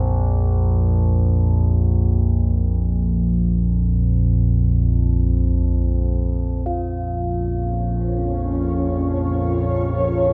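A nasal analog drone sits up front from 0.0 seconds, its sawtooth and pulse-wave tones slowly evolving under pulse-width modulation and a chorus effect, low in the Bb1 to F2 range. This dark ambient passage in Bb minor unfolds in free time, tuned to A4 = 438 Hz, with an unsettling, desolate mood. The harmony rests on a bare Bb5 before turning to Bb minor at 6.7 seconds, when a quartz singing bowl enters with a pure, ringing, meditative tone and slow beating, played with a suede striker. At 8.2 seconds a bright granular cloud pad enters with sustained chords from Db4 to Db5, its detuned sine and sawtooth layers blurred by built-in reverb. Slow attacks and long releases shape both synth parts, and a light reverb surrounds this fragment of a longer piece.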